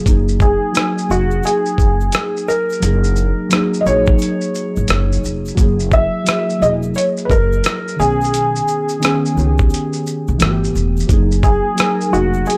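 A soft, felt-muted upright piano carries the melody from 0.4 seconds, its mellow, intimate tone touched with audible action noise and shaded by a low-pass filter and tape echo. Beneath it, warbly lo-fi synth keys supply detuned, chorused chords with a dark, nostalgic pulse-and-sawtooth character, dulled further by cassette tape coloring and filtering. A pizzicato upright bass sounds woody, while a dusty, sampler-style drum kit of thumpy kick, hi-hat, rim click and shaker brings a compressed, swung feel. A grainy egg shaker sits bright but in the background. This dreamy, cosy lo-fi hip hop excerpt drifts through lush sixth-ninth chords, moving to G69 at 10.4 seconds before settling back on F#69, and the dry, gritty recording keeps the piano, keys, bass and drums up front.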